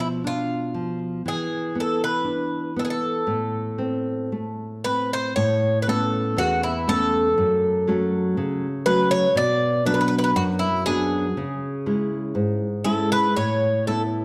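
This fado-style ballad, cut from a longer piece, carries a longing, mournful mood in a free, rubato 2/4. A picked Irish bouzouki sings the melody with the metallic shimmer of its double strings, sitting up front in the mid register. Beneath it, a fingerpicked nylon-string guitar gives classical accompaniment, also up front and reaching down into low bass notes. A second section begins at 5.4 s, with chords such as Aadd9, F#m and C#m before the passage settles on Asus2. The two acoustic instruments sound warm and close, and a wet recital-hall reverb lends a lingering, spacious tail through to the guitar's last note at 14.2 s.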